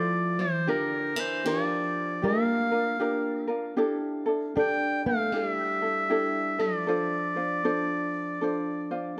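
Languid and relaxed, this short Hawaiian excerpt drifts along at 78 BPM in 4/4 with a swung eighth-note feel, set in D minor. A warm, soft-attacked oboe carries the melody in a classical style, sitting up front as the solo voice with a touch of tape echo. Beneath it, a fingerpicked, plugged-in acoustic guitar plays a boxy, swing-style second line in a lower range. A mellow, light ukulele, also fingerpicked and placed up front, supplies the accompaniment. All three play throughout the 9.2 seconds, moving from Dm9 through Gm7 and A7sus4 to settle on Dm7, captured with close, detailed microphones in a moderate recital hall reverb.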